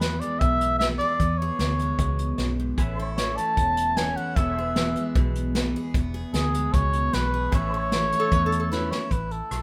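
Heartfelt and easygoing, this honky-tonk and classic country excerpt moves at 152 BPM in a straight 4/4 in A major, moving between E and A chords. A cup-muted trumpet carries the melody up front in a soft, veiled, jazz-style voice with light vibrato and a gentle attack. A bright, full-bodied dreadnought acoustic guitar is picked underneath with audible finger squeak, while a dark, round, foam-muted vintage electric bass gives punchy support. An unplugged acoustic drum kit played with bundle sticks sits in a roomy studio space, with hi-hat, rim click, a medium-tuned snare and a punchy kick, and it plays a fill at 8.7 seconds. In the background, a clean, compressed pedal steel guitar played with fingerpicks holds sustained chords with volume swells, and a nasal, metallic lap resonator guitar slides in briefly with a second line at 8.2 seconds, all framed by light reverb.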